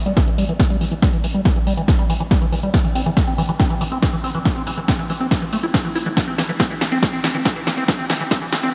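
An overdriven, punchy electronic kick stands out in this emotional, driving uplifting trance build-up. Around it, an analog drum machine of congas, hi-hat, shaker and high-passed snare drives a drum fill, and a squelchy, resonant acid bass arpeggio with phaser, analog delay and pumping sidechain rides a filter sweep. Beneath them sits a very quiet, tight sawtooth-and-square sequencer bass, moving through Em, Am and C in a dreamy, reverb-soaked cathedral mix cut from a longer piece.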